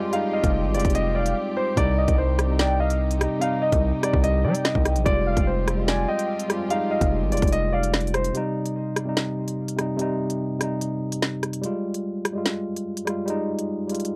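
A half-time drill groove at 146 BPM in 4/4 drives this dark, cold hip hop excerpt in C minor, its electronic kit placing a hard-clipped kick, woody snare, crisp hats and rim clicks up front. Beneath it, a distorted 808-style bass with tube saturation, a noise layer and a fast, decaying attack hits heavy and aggressive, sitting just as forward as the drums. A mellow concert grand carries the melody in a high register, while a worn, slightly out-of-tune tine electric piano plays clean accompaniment that sounds as if heard through built-in speakers. Gut-string studio strings hold reedy, period-style chords with light vibrato, and a velvety detuned synth lead with chorus and tape echo adds a smooth second line in the background. The harmony moves between Fmadd9 and Cm. The synth drops out at 7.9 seconds, and at 8.3 seconds the piano, strings and bass follow, leaving the electric piano and drums in a sparse break that runs to 14.2 seconds. 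The mix is dry and gritty, with little reverb and a hardware edge.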